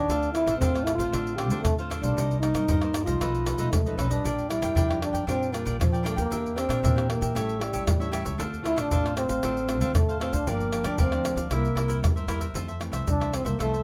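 A straight 4/4 samba-and-choro groove at 116 BPM in F major, driven by a tight surdo, pandeiro, tamborim and egg shaker that sit close and dry up front, carries a festive, lively excerpt in which a breathy, mellow jazz trombone with light vibrato sings the melody over a crisp, picked cavaquinho, a dark, fingerpicked classical nylon-string guitar in the background and a woody pizzicato upright bass, all touched by light reverb as the chords move from Dm7 through Bb6, Em7b5 and A7 to land on Fmaj7 at 12.6 seconds.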